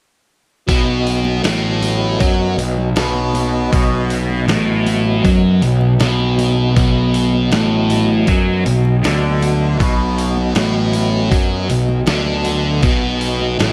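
Cut from a longer psychedelic rock piece, this hazy, hypnotic passage opens at 0.7 seconds with a bright, double-tracked fuzz guitar riff with phaser up front over round, overdriven fuzz bass and a gritty, compressed sampler-style soul drum kit with a thumpy kick, while a soft, flute-like tonewheel organ holds sustained chords through a slow rotary speaker in the background, barely audible high-tuned congas join at 1.2 seconds, and light reverb lends a digital ambience.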